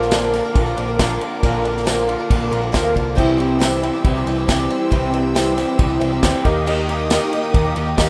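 Folk rock and heartland rock with a nostalgic, jangly feel, this short excerpt sets a twangy, slightly broken-up electric guitar riff with ensemble chorus up front against a shimmering, octave-doubled twelve-string acoustic, a round, dark hollow-body electric bass, a punchy, airy unplugged drum kit played with bundle sticks, a background tambourine from 0.1 seconds, lush bowed strings in the background, and a very quiet, brilliant grand piano that slips in a fill at 2.3 seconds, all moving from Bb through C to Eb in a dry, rough home-demo mix.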